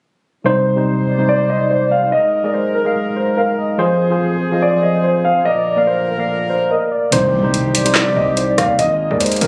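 A half-time drill groove in 4/4 sets a menacing, cold hip hop mood, as a dark, mellow grand piano carries the melody over a worn, slightly out-of-tune tine electric piano, both low-pass filtered, with classical-style brass chords bearing light vibrato and a velvety, detuned synth lead with chorus and tape echo sitting in the background, until at 7.1 seconds a tape-warm drill kit with woody snare, metallic hats, handclaps and rim clicks arrives alongside a heavy, distorted 808-style bass and a very quiet impact, the whole mix sounding as if captured on a phone in a club-like room.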